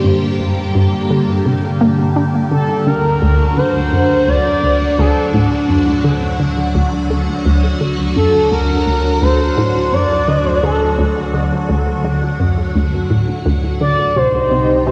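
A smooth, expressive portamento lead with vibrato enters at 2.5 s over swirling, vintage phased string-machine chords and a squelchy, resonant blip-pluck riff with analog delay, in a mysterious, cosmic excerpt of sequencer-driven ambient space music set in a vast, echoing cathedral space with a softened top end.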